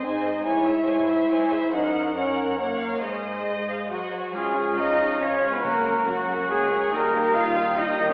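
Soaring and heroic, this 8.1-second cut from a longer cinematic adventure score moves at 140 BPM in 3/4 in Ab mixolydian. A lush, vibrato-rich symphonic violin section carries a focused, smooth-topped melody, with a studio violin section playing a second line in the background. Beneath them sit background violas, rich bowed cellos and mellow, distant French horns holding sustained chords. At 3.9 seconds up-front trumpet stabs ring out, followed by a punchy, roomy solo oboe, an airy, hollow close-miked flute and a rich double bass section, while timpani with medium mallets and calf heads sound briefly from 5.6 seconds. Everything sits in a wet scoring-stage reverb heard from further back in the room, with a telephone-like tone.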